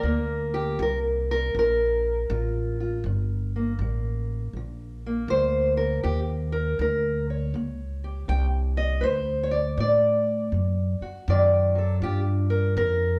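Brooding and smoky, this acoustic country blues passage, cut from a longer piece, sits in G minor at 80 BPM in 4/4 with a swung eighth-note feel: a boxy, parlour-toned fingerpicked steel-string acoustic guitar carries the melody up front while a woody, thumpy pizzicato upright bass holds the low end beside it, both playing through all 13.2 seconds over a Gm, Eb7, D and Gm7 progression, wrapped in a wet studio reverb heard from further back in the room.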